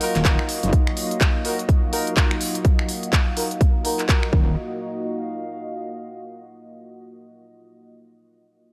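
Bass house with a gritty, swaggering mood, cut from a longer piece, where a punchy, up-front electronic kick and a house kit of finger snaps, handclaps and crisp hats drive a swung groove, joined briefly by a very quiet brushed jazz kit at the start. A metallic, distorted FM wobble bass hits at 0.2 seconds and returns near 4.3 seconds, while a smooth-topped horn section plays stabs with light vibrato, tape echo and a filter sweep over a minor add-nine chord. Underneath, a deep, moody sawtooth pad and a warbling, nostalgic lo-fi pad pump against the kick, with the tape-like pad lingering alone until 6.4 seconds in a small, lightly reverberant room.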